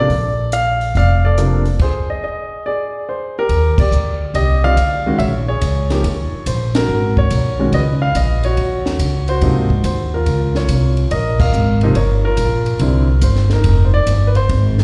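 This sounds like a live gig heard through the venue's PA, with a light recital-hall reverb around the band. It is a playful, swinging jazz piano trio in 4/4 with a firm swing on the eighth notes, cut from a longer piece. The grand piano carries the melody up front, intimate and natural, with audible action noise and a slapback echo. The pizzicato upright bass sits close and prominent, woody and thumpy on steel strings. A compact cocktail kit with a high-tuned snare and punchy kick plays with a dark, smooth small-room sound, using ride, hi-hat, crash and rim clicks. The band drops into a stop from 1.8 to 3.5 seconds, then hits several accents together as the harmony moves through colourful turns like a rootless Bb9, Abm11 and Db6.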